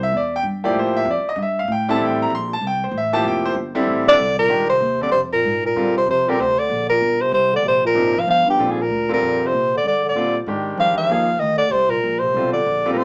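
Heard through a small speaker with moderate studio reverb and a band playing live in one room, this hypnotic, spiritual modal jazz excerpt swings at 191 BPM in 4/4 as a clear, up-front grand piano and a woody, pizzicato upright bass on steel strings move from Am7 to Dm7/A before a dark, whispered soprano saxophone takes the melody at 4.1 s alongside a mellow bass clarinet second line with light vibrato and a punchy, smooth top, the harmony settling onto Gm7 in G phrygian from 4.5 s.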